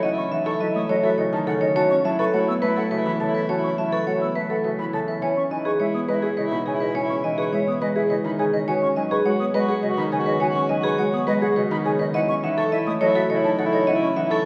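Classical minimalist pattern music in a meditative, hypnotic 3/4 at 104 BPM in F# dorian, where an up-front, metallic vibraphone struck with hard mallets carries the melody with a slow motor vibrato over a fingerpicked Celtic harp accompaniment, airy distant flute arpeggios and intimate grand piano arpeggios with audible action noise, while a mellow soprano saxophone adds a second line, all in the long, wet reverb of a church.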